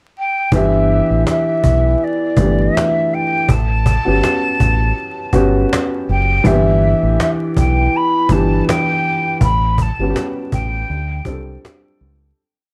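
A breathy, hollow flute opens with a pickup at 0.2 s, stating a motif-based melody in song-like phrases before a dreamy, mellow lo-fi hip hop groove settles in at 81 BPM in G lydian with a light 16th-note swing. From 0.5 s a dark, woody upright piano with audible action noise and a cassette-tape tint repeats rhythmic drop-2 chords with grace notes like a sampled loop, moving between G6 and A13 and closing on D7sus4, while a round, up-front dub electric bass plays a sparse line with chromatic approach notes under a snappy cajon keeping a sparse beat with quarter-note hats. Vinyl crackle and light reverb frame the short piece, which fades out from 9.4 s.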